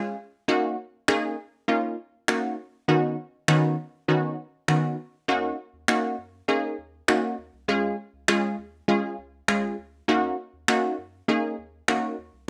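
Dance-pop in Eb minor at 100 BPM, this short cut from a longer piece feels confident yet bittersweet, moving steadily in a straight 4/4. A punchy, bright chord stab sits up front from the very start, its detuned sawtooth tone carrying a filter sweep, a fast attack and a decaying tail, with chorus and sidechain pumping giving it a breathing motion. Layered electronic finger snaps enter at 1.1 seconds. At 5.3 seconds a round analog bass joins far in the background, a dark, nasal blend of square and sine waves with a fast attack and sustained notes, also pumping against the sidechain. The harmony cycles through Ebm7, Badd9/D#, Ebm7, Db and back to Ebm7, and a moderate studio reverb lends the mix a modest sense of space.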